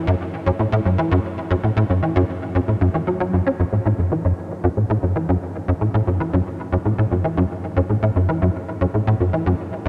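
A tight sequencer bass carries this ambient excerpt alone, moving between F#2 and C#4 in F# minor at 115 BPM in a straight 4/4. Its tone blends sawtooth and square waves with a ring-modulated edge and a filter pluck, each note striking with a fast attack and then decaying. Ensemble chorus and delay thicken and echo the bass, which sits up front, punchy and driving. A wet, huge ambient reverb with a 7.7-second tail surrounds it, lending the hypnotic pulse a cosmic sense of space. Cut from a longer piece, the fragment runs about 9.9 seconds.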